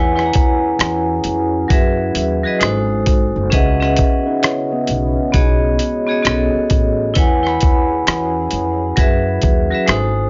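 Lo-fi hip hop at a slow 66 BPM in 4/4 with a swung sixteenth feel, reflective and nostalgic in mood, cut from a longer piece. Up front, a vibraphone struck with hard mallets rings out with a metallic, smooth tone and slow motor vibrato, its sound softened by cassette-tape coloring and a low-pass filter, while a sampler-style drum kit of hi-hat, thumpy kick and rim click sits just as forward, compressed and gritty with a 12-bit sampler crunch. Beneath them, a pizzicato upright bass adds a woody, warm low end, and a deep, moody analog pad of detuned square, sawtooth and triangle waves with a sub octave swells in slowly behind, treated with chorus, phaser and filtering. Very quiet finger snaps join at 0.8 seconds, and a mellow, clean tine electric piano with tape echo surfaces briefly in the background from 4.3 to 5.3 seconds. The harmony moves through lush extended chords such as E69, C#m11 and B13, and the whole mix has a dry, gritty hardware character with light reverb and a dulled top end.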